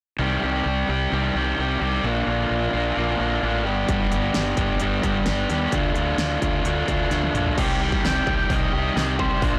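Indie rock at 130 BPM in C dorian, cool and moody and cut from a longer piece, with an up-front, compressed overdriven electric guitar riff and a round, dark fuzz fingered electric bass sounding from the start, a layered big-room dance drum kit with punchy kick, huge snare and crisp hats entering at 3.9 seconds and playing a fill at 7.1 seconds, and a distorted octave-fuzz lead guitar melody arriving at 8.1 seconds, all set in light reverb within a blown-out, overdriven mix.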